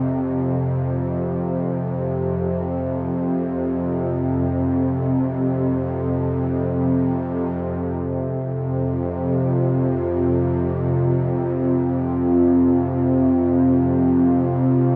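A cavernous, reverb-soaked hall wash frames this desolate dark ambient drone in free time, cut from a longer piece, where a tense, string-like bowed drone, bright and up front with vibrato, sits low from the start before a deep, moody, dark pad with chorus and a sub octave enters at 9.0 s to hold sustained chords above it until 15.0 s.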